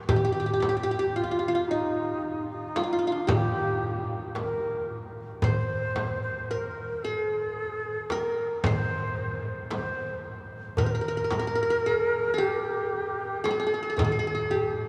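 Arabic maqam ensemble music in a festive, passionate 10/8, this short excerpt features a mellow, plectrum-plucked qanun carrying the melody up front with a bright-edged triple-string ring, while a breathy end-blown ney with vibrato and a soft attack plays a second line, also up front. A crisp metal-shelled darbuka sits close and dry in the background, and a warm frame drum struck with hard hands adds small-room depth, all set within a wet cathedral reverb.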